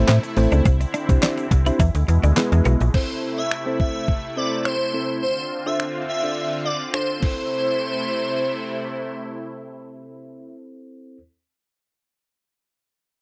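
A straight 4/4 pulse at 105 BPM drives this bittersweet, confident dance-pop excerpt in A minor, set by a clean 12-bit drum machine with a thumpy kick, fat snare, hi-hat, handclaps, finger snaps and crash cymbal, running from 0.1 to 7.4 seconds alongside a grainy tube shaker that sits distant in the background. Up front, a snappy slap-like FM bass with a metallic attack pumps beneath the opening, while a twangy, picked twelve-string electric guitar with subtle chorus plays a short riff over Am, Cadd9 and E before both drop out near 2.9 seconds. A mellow tine electric piano carries the accompaniment, and a filtered supersaw swell adds evolving, detuned sustained chords with a soft attack, both breathing with sidechain pumping. At 2.9 seconds an airy, dreamy lead enters over Am and Dm7, its detuned sine tone with a noise layer, vibrato and portamento coloured by chorus and tape echo. The dry, close sound recalls a 1970s studio with little reverb.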